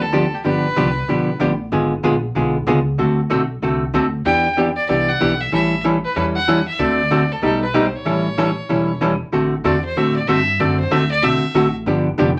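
Western swing country at a brisk 189 BPM, cheerful and playful, with a swung feel in D mixolydian. An up-front, dark, clean electric archtop guitar carries the picked hollow-body accompaniment throughout, over a woody pizzicato upright bass, while a close, biting fiddle with light vibrato and an airy bow plays a brief melody phrase at the start and returns at 4.3 seconds. Earlier colorful changes such as G#dim7 and Baug7 give way at 9.3 seconds, when the fiddle launches an intense solo over D9 and G7, set in a wet studio ambience.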